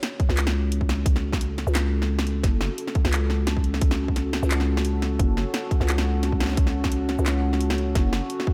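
Heavy and dark, this half-time drum and bass excerpt moves at 174 BPM in 4/4 with a swung sixteenth-note feel, resting on a single F# minor chord throughout. An overdriven, hard-clipped electronic kick sits up front from 0.2 seconds, joined at 0.3 seconds by a growling, buzzy 808-style bass with a fast attack and decaying tail, moving between F#1 and C#2. The layered drum kit brings handclaps, hi-hat, shaker and a cracking snare. Underneath, a deep, moody analog pad built from sawtooth and triangle tones with a sub octave holds slow-attack chords from C#4 to A4, colored by chorus and phaser and pumping against the sidechain. Light reverb surrounds the mix, giving the short fragment of a longer piece a produced, weighty feel.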